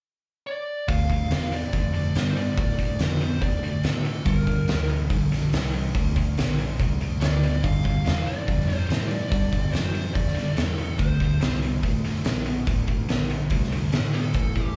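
A straight 4/4 pulse at 143 BPM drives this smoky, brooding slice of blues rock power trio and southern rock in D minor, cut from a longer piece. A dark, compressed fuzz lead guitar opens the melody at 0.5 s, carried by distortion and slapback echo, and drops out before returning briefly at 14.1 s. At 0.9 s the rest of the band arrives: a sludgy, double-tracked guitar grinds out an overdriven riff, and a vintage foam-muted bass adds a round, amped low end. The oversized low-tuned drum kit sits up front, with a boomy kick, a fat snare and hi-hat, heard in a gritty, pumping stone room. The harmony moves from Dmadd9 through Gm, D5 and Gsus2 back to D5, all captured as a live gig through the venue's PA with moderate club reverb.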